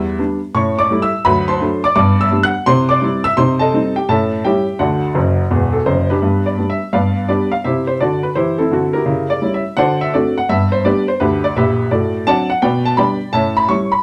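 Exuberant and swinging, this short stride piano piece moves at a brisk 169 BPM in 4/4 and G major, with a 65% swing on the eighth notes. A lone upright piano carries everything, ranging from a deep E1 up to a bright F#6, its tone woody and intimate with a slightly detuned edge, audible action noise and a short sustain. The piano sits up front, though the whole recording is heard from further back in a club, wrapped in a wet reverb. After an opening section built on quick changes like Em7, A7 and D7, a piano fill from 5.2 to 6.2 seconds leads into the second section at 6.2 seconds. That passage passes through C, a C#dim and D7 before turning toward A7 as the cut-off fragment ends at 14.0 seconds.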